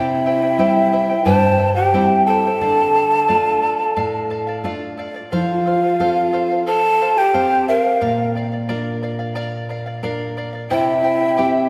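Andean folk played by an Andean ensemble at 89 BPM in a straight 4/4, with a mood that is festive yet tinged with melancholy. The lead comes from a large wooden quena, up front, airy and hollow with vibrato and a soft attack, singing between E5 and A5. Beneath it, large cane pan pipes carry a second line, breathy and mellow with tongued chiff and their own vibrato. A bright, shimmering charango fingerpicks its double strings, some doubled at the octave, while a full-bodied nylon-string guitar adds deep classical fingerpicking, finger squeak included. All four parts play through the full 11.7 seconds over C, Dm, F and Bb harmony, inside the long, lush reverb of a church or concert hall, in what sounds like a section cut from a longer piece.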